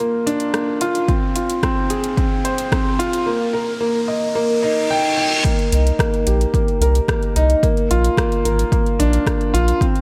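Piano and strings electronica with a hypnotic, intimate mood, in a straight 4/4 feel, heard as a cut from a longer piece. A dark, mellow grand piano carries the riff from the start, sitting up front with a smooth, vintage character and a touch of delay, while a deep house drum kit supplies metallic, overdriven hi-hats and rim clicks. A punchy, layered electronic kick enters at 1.1 seconds, its overdrive adding grit under a harmony that moves through Bb, Fm and Eb during the build-up. A riser arrives at 2.9 seconds and a reverse cymbal follows, leading into the drop at 5.4 seconds, where the chords shift to Cm7 and back to Bb. Shortly after, at 5.7 seconds, a round, sine-like sub bass with a fast attack and sustained tone joins with sidechain pumping, all set in a light reverb.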